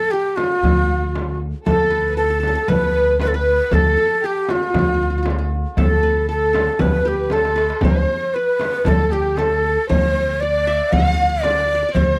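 A dry, close recording with light reverb and a 1970s studio character frames this passionate, warm Arabic maqam ensemble piece in D maqam rast, moving at 117 BPM in a straight 4/4. A breathy, end-blown ney carries the melody up front, its reed-cane tone crisp in attack and shaded with vibrato. Beneath it, a bowed violin section adds an expressive second line with vibrato. A qanun played with fingerpicks also carries a second line from the background, giving a bright-edged tone from its triple strings. A woody, thumpy pizzicato upright bass holds D2 up front, while the percussion sounds distant in a large room: a small, high, metal-shell darbuka and a deep, large frame drum. A drum fill arrives at 7.3 seconds in this passage, which is cut from a longer piece and runs to 12.2 seconds.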